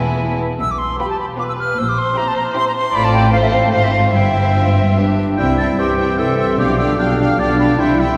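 A quick classical-period movement for symphony orchestra in C major and 3/4, this brief passage runs at about 143-156 BPM with a rubato feel and a dramatic, stormy mood. The violins carry the melody from a place in the background, while a bright, pure silver flute sits up front on a crisp-attacked second line above them, joined by a second violin section with a focused, smooth top. Violas supply vibrato-rich accompaniment, and the bass is held by a lush cello section and a soft-attacked, distant double bass section with an expressive warmth. At 5.0 s a bright solo clarinet adds another second line, and at 5.4 s, as the harmony returns to C, a present oboe, a mellow bassoon and a very quiet, roomy French horn section playing sustained chords join in. A wet church reverb lends the whole ensemble a long, resonant halo, and the passage is cut from a longer piece.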